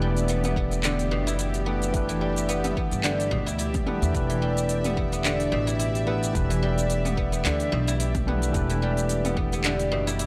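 This earthy, organic downtempo excerpt opens on a single sustained Em11 chord. A clean tine electric piano with analog delay and a guzheng plucked with fingerpicks in ringing, silvery arpeggios play over a woody, dark pizzicato upright bass that sits up front. Behind them, a tense, string-like drone holds slow-attack chords with vibrato, a detuned sawtooth edge, a noise layer and its own reverb, while a bronze singing bowl struck with a wooden striker hovers barely audible with slow metallic beating. An overdriven electronic kit arrives at 0.2 seconds with smooth hats, handclaps, shaker and toms in a lightly swung feel, and a deep, layered electronic kick joins at 0.6 seconds. The kick runs until 9.5 seconds, and the sidechain pumping on the piano, drone and bass gives the groove a breathing motion. The sound is dry and gritty, with transformer saturation, light reverb and a digital ambience around it.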